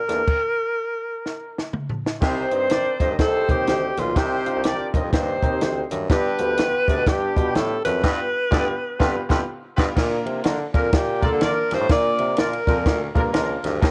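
Spring reverb and vintage 12-bit sampler grit on the drums colour this joyful, danceable excerpt of uptempo 1960s-style soul in Bb major at 124 BPM with a swung feel, where a breathy, subtoned alto saxophone carries the melody up front over a dry cocktail drum kit, a woody, slightly detuned upright piano and a clear bassoon on bass, the band stopping for a drum fill before a distant horn section, a raspy, growling baritone saxophone riff and soft, low-tuned congas join at 2.2 seconds, with a band accent from 8.0 to 10.0 seconds.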